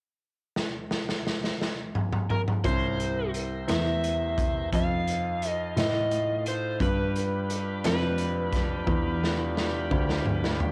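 This cut from a longer piece sounds like a home recording on cassette, with the ambience of a small room. It is a gritty, swaggering slow blues in 12/8 at 58 BPM in C major, with a straight feel. A raw garage drum kit of hi-hat, kick, snare and toms opens with a fill at 0.6 seconds; it sits up front, with a boomy kick, a medium-tuned snare, a saturated, pumping room sound and a rolled-off top, and it closes on another fill. An overdriven electric slide guitar, fingered and carrying a cassette-tape tint, enters at 2.3 seconds with the melody between Bb4 and F5. From 2.6 seconds a baby grand piano takes the bass role low in its range, its natural, short-sustained tone pushed forward and thickened by transformer saturation. A smooth, clean tonewheel organ holds sustained chords through a slow rotary speaker as the harmony moves through C7, F7 and G7.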